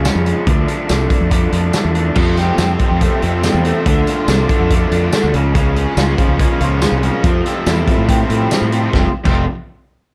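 A dark, lightly reverberant indie rock excerpt in an upbeat, jangly mood opens with a raw, up-front garage guitar riff, growly fuzz bass and a loose, gritty drum kit with punchy kick, crash, hi-hat, snare and tambourine, before a bright overdriven second guitar with chorus and slapback echo joins at 2.2 seconds over chords moving from Dm through Db6 and Fmaj7 to settle on F.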